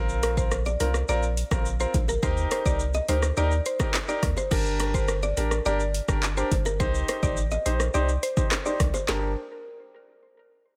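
Tough and sultry, this short cut from a longer dancehall piece moves at 105 BPM in G minor, its harmony shifting from Bbsus2 and Eb to Gm and Cm. A punchy sub bass sits up front with a mellow, sine-based tone and a pitch-drop attack. An electronic afro-pop drum kit, overdriven and re-recorded in a small room, drives the groove with a deep kick, woody snare, metallic hats, rim clicks, handclaps, shaker and crash. Over this, a mallet-like FM synth pluck carries the melody with a round, percussive voice, thickened by chorus, filtered and trailed by tape echo. A bright grand piano with long sustain supplies polished, filtered accompaniment. Tight, high-tuned bongos join at 0.7 s, tucked into the background with a compressed, saturated edge, and the whole mix sits in a digital ambience.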